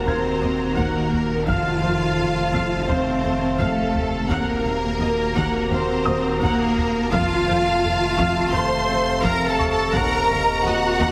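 Tense and futuristic, this 85 BPM cinematic excerpt of a hybrid orchestral and electronic film score sets vibrato-rich violin lines over a lush viola section with portamento, an expressive cello bass, a bowed double bass section from 0.1 s, mellow French horn chords, very quiet clear trombones, a bright sawtooth drone with built-in reverb, a deep sine-and-triangle sub bass, a soft felt-muted upright piano with digital delay and background taiko struck with heavy sticks, moving between Ebm and F in a hall reverb with a heavily compressed radio sound.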